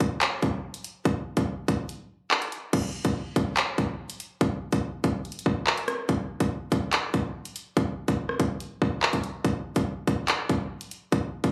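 An up-front electronic drill drum kit of hard-clipped kick, bright hi-hats, handclaps, rim clicks and crash cymbal drives this dark, cold hip hop fragment at 143 BPM in a half-time 4/4 feel, with the kick dropping out from 1.9 to 2.7 seconds before the next section begins, all heard through moderate plate reverb and captured on a phone in a room carrying club reverb.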